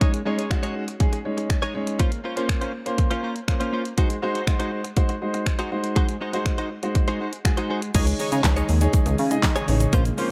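A punchy, up-front pop drum kit drives this summery, upbeat dance-pop excerpt in Db major at 121 BPM, its fat snare, handclaps, finger snaps, hi-hat and shaker joined by a sidechain-pumped concert grand piano with deep bass and long sustain and a clean, compressed, direct-recorded electric guitar riff coloured by analog chorus. At 7.9 seconds a glossy, nasal synth bass with a fast filter pluck arrives alongside a very quiet, grainy egg shaker, and from 8.2 seconds an airy, breathy pad with chorus, phaser and sidechain pumping drifts in the background. The production is dark with light reverb, moving through Dbsus2, Bbmadd9 and Ab7 before returning to Dbsus2.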